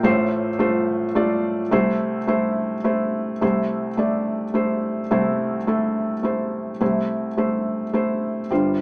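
Folk in 3/4 time, this brief excerpt carries a nostalgic yet hopeful mood, played by a lone felt-muted upright piano that spans from G1 up to D5. The piano sounds soft, mellow and intimate, sitting up front with short sustain and audible action noise, moving from an F/A chord to C6 at 1.7 seconds. A wet studio reverb with a short decay frames the playing, and the passage moves through three brief sections before breaking off at 8.8 seconds as a cut from a longer piece.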